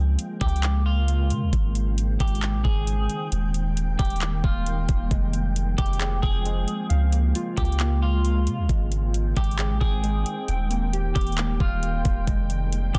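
Atmospheric cloud-rap in a hazy, ethereal mood, this hip hop excerpt sits at 134 BPM in 4/4 with a half-time feel, cycling through Db6, Abmaj7, Eb and Fmadd9. A glassy FM pad holds sustained chords from the start, softened by ensemble chorus and built-in reverb and breathing with sidechain pumping. A soft, round 808-style bass sits up front with a dark, decaying tone, joined at 0.2 seconds by a smooth R&B drum kit of knocking kick, metallic hi-hats and handclaps. A clean, picked electric guitar carries a narrow melody from 0.4 seconds, bathed in lush chorus, low-pass filtering and digital delay. At 5.1 seconds, warbly lo-fi synth keys add detuned, nostalgic arpeggios with a filter sweep, while the dense, heavily limited master keeps the overall sound close and dry.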